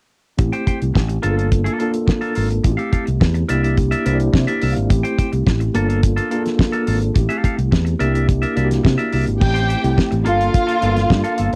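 A straight 4/4 disco groove at 106 BPM in G dorian, led by a damped 70s drum kit with a fat snare and tight kick, and a round, up-front fingered electric bass, sets a sultry, glamorous mood in this dry, cassette-recorded home take. A twangy, picked clean electric guitar and a mellow tine electric piano, heard through its built-in speakers, accompany the groove over chords cycling through Am7, Gm9, Fmaj9/A and C9, with the piano adding a fill from 3.8 to 4.9 seconds. At 9.4 seconds a dark, woody, lush string section enters with a bowed, vibrato second line before the cut ends.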